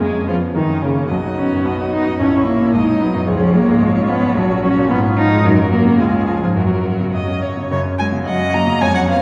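This is a brief excerpt from a quick, dramatic and restless classical-period movement for piano quartet in F# major, moving at 110 BPM in a straight 2/4. All four players sound together from the opening moment: a bright, brilliant grand piano with long sustain and a vibrato-laden cello sit up front, while the violin and viola sound more distant. The violin carries the melody with a focused, bowed tone and vibrato, reaching up to A#5. The cello plays a second line with a smooth top, and the viola adds accompaniment with soft attacks, portamento and expressive vibrato alongside the piano's supporting part. The harmony circles around F#, B and C# with a diminished chord on A# at 2.2 seconds, before arriving on a bare F#5 at 7.7 seconds as the opening material begins again. A wet concert-hall reverb and a listening position further back in the room lend the ensemble a spacious, resonant setting.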